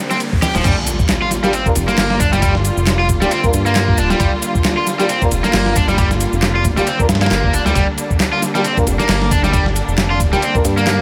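A lush, bowed string section opens this funky, energetic breakbeat excerpt, holding sustained chords with rich vibrato and a sidechain pump, while an electronic riser sits in the background and gives way to an impact as the drop arrives at 0.6 seconds. Almost at once a gritty, sampler-style drum kit kicks in with a thumpy kick, a medium-tuned snare, hi-hat, ride and crash, all re-recorded in a large room, alongside layered, overdriven electronic shaker and handclaps. A bright, crunchy electric guitar sits up front with a picked riff trailed by delay. At the drop a fat, detuned analog bass enters, its nasal sawtooth-and-square tone shaped by a fast-attack filter pluck. From 1.4 seconds a mellow, tight brass section adds classical-style stabs roughened by 12-bit sampler grit and delay, and the swung groove sits inside a roomy digital ambience.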